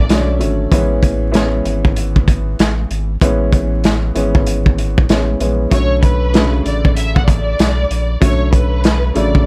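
A dry sound with vinyl crackle throughout frames this tough, gritty boom-bap hip-hop excerpt, built on a swung groove. A crunchy, punchy breakbeat kit sits up front with a saturated, deep sub bass, while a dark, woody upright piano with audible action noise and a cassette-tape tint carries the Bm7 to Amaj7 accompaniment. A lush, distant studio violin section with expressive vibrato flickers briefly at the start and then returns at 5.7 seconds with the melody as the harmony settles back on Bm7.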